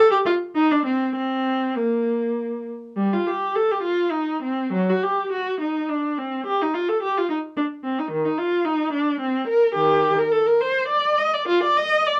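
A rich, bowed solo viola, up front yet distant, with expressive vibrato and portamento, spans Eb3 to Eb5 across 12.2 seconds of a serene, flowing baroque-style suite movement in G minor, its rubato 3/4 pulse around 96-110 BPM heard through light reverb and a worn, warbling old cassette tape with warbly pitch drift, cut from a longer piece.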